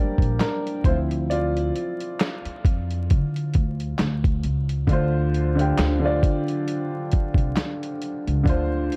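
This lo-fi hip hop piece is reflective and hazy, moving at a slow 67 BPM in 4/4 with a light swing on the sixteenths, in D minor. An upright piano with a smooth, vintage, woody tone plays the accompaniment, softened by a low-pass filter, and takes a solo through the first 4.9 seconds. An acoustic upright bass, plucked pizzicato on steel strings, sits up front with the piano, entering at 0.2 seconds alongside a compressed, pitched-down, sampler-style drum kit of thumpy kick, medium-tuned snare, hi-hat and handclaps with a muffled character. The harmony moves from Em7b5 to Dm7, and the same section repeats from 4.9 seconds. Studio reverb, vinyl crackle and a dark, warm production give the cut, taken from a longer piece, its dusty haze.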